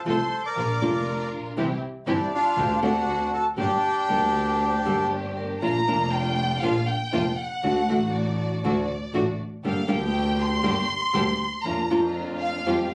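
Tango, melancholic and passionate, this fragment of a longer piece moves with a loose rubato feel. A reedy, dark bandoneon sits up front carrying the melody until 5.1 seconds. A lush violin section with vibrato plays a focused second line above it, then takes the solo from 5.6 seconds. Beneath, a small fingerpicked nylon-string guitar supplies acoustic accompaniment, an expressive string section adds shadowy bowed stabs, and a close, earthy double bass is bowed with light vibrato and an airy tone. A metallic, ringing vibraphone with medium hard mallets and slow motor vibrato slips in quietly in the background at 4.1 seconds. Captured on a phone in the room, the sound carries club ambience, a wet reverb and noticeable compression.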